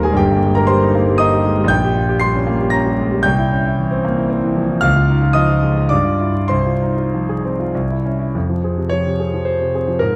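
In a rubato 3/4 swaying between 95 and 119 BPM, this passionate, bittersweet romantic character piece in F minor, tuned to A4 = 441 Hz and cut from a longer work, features a solo concert grand piano that sounds clear and up front, with deep bass and long sustain across a range from Eb1 to C7, its harmony moving from Eb/G through Gdim/Bb, C7 and Db before settling on F minor at 8.3 s for a new section that runs to 10.2 s, all within a moderate scoring-stage reverb and a dark production flecked with vinyl crackle.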